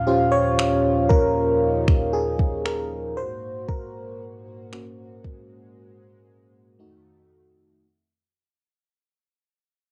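A slow, straight 4/4 pulse at 58 BPM sets this late-night, sensual piece of contemporary R&B, with a smooth electronic drum kit of finger snaps and a soft, tape-warm kick sitting up front from 0.6 to 5.5 seconds. Over it, an FM electric piano takes the lead as a solo throughout, its glassy, bell-like attack decaying through chorus, with a noise layer in its tone. A dark, shimmering pulse-width pad holds sustained chords underneath, its retro blend of pulse, sawtooth and sine tones with a sub octave and a moving notch swelling in with a soft attack and sitting lower in the mix. The harmony moves from Eb13 to Ab9sus4 and then to F7b9, and the drums drop out at 5.5 seconds, ahead of a break from 5.8 seconds while the piano and pad carry on. The whole short fragment fades out, cut from a longer piece, and a moderate room reverb and the character of a home cassette recording give it an intimate, worn quality.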